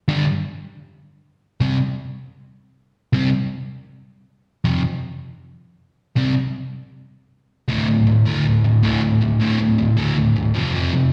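A sludgy, distorted electric guitar carries this rowdy, upbeat punk clip on its own, playing from 0.1 to 11.1 seconds. Its tone is dark and overdriven, picked and double-tracked, and it sits up front with a slapback echo trailing each chord. The opening stretch settles into a half-time feel as the guitar moves through G5, C5, F5 and back to C5. At 7.7 seconds a new section begins on D5 before landing on F5 near the close. The sound is a live gig heard through the venue's PA, with moderate club ambience and recital hall reverb around the guitar, and the clip is cut from a longer piece.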